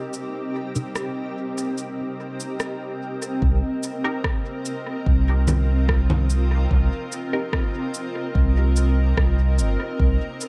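This ambient dub excerpt drifts at 73 BPM in a straight 4/4, with a hazy, spacious mood and a dark production around a dry room sound. A cloudy, evolving granular pad sustains blurred, full-bodied chords throughout, moving from Cm7 to F7sus4/C. In the background, a bubbling, resonant texture with random filter steps, chorus and reverb shimmers over the opening, while electronic shaker, rim click and congas tick through dub echo. From 0.8 seconds a muted, wave-folded chord stab with a filter pluck enters, treated with phaser and dub echo, and a filter sweep moves across it through the first section. At 3.4 seconds the texture gives way as a round, sine-based sub bass with tube saturation arrives up front, joined by a deep electronic kick sitting further back.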